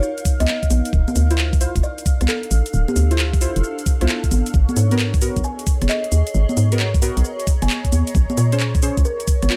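Soulful and bouncy, this two-step UK garage excerpt swings its sixteenths over a 4/4 groove, moving through lush ninth chords from Ebsus2 to Dm9, Abm9 and Bbm9. An overdriven, knocking electronic kick sits up front beside a hollow, punchy FM bass, which enters at 0.4 s with quick, decaying notes in a low register. The garage drum kit adds metallic hi-hats, handclaps, rim clicks, shaker and congas, with a layered, overdriven edge and studio reverb shared with the kick. A smooth, detuned analog pad holds sustained chords under chorus and sidechain pumping, while a granular cloud pad drifts in the background with a blurred, evolving shimmer. A woody kalimba plucks a soft, airy melody through tape echo, and from 1.3 s a dark, full-bodied chord stab with a filtered pluck, chorus and cassette grit punctuates the groove, all within a light reverb.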